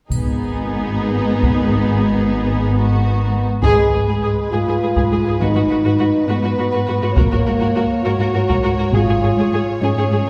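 Relentless and dramatic, this epic orchestral film-score passage moves in 6/8 over a G# minor harmony that later shifts to chords held above a steady G# bass. Two violin sections carry the melody and a second line with smooth, even bowing and vibrato, while rich, lush violas fill the middle, and cellos and double basses anchor the low end, the basses sitting further in the background. A taiko ensemble pounds beneath with heavy sticks, and a bright triangle glints only in the first second or so. At 3.6 seconds the full band lands a strong accent as a dark French horn section enters with soft-attacked sustained chords, set up front yet carrying a distant, roomy quality. The whole passage is heard from further back in a concert hall, its long reverb lending grandeur to this fragment of a longer piece.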